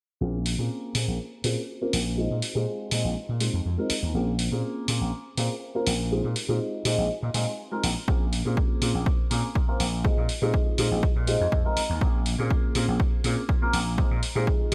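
A bright, 1980s-style digital sheen with light reverb frames this sensual, nostalgic filtered disco house excerpt at 122 BPM in Bb minor, with a filter sweep running through its whole length. A dark, mellow, boxy grand piano, treated with phaser, low-pass filtering and sidechain pumping, moves between Bbm9 and Fm7/Bb over a round, amped slap bass that shares the filtering and pumping. An analog-toned electronic hi-hat, pumping and re-recorded in a small room, joins at 0.5 seconds, and a layered, punchy kick with tape-like warmth enters up front at 8.1 seconds.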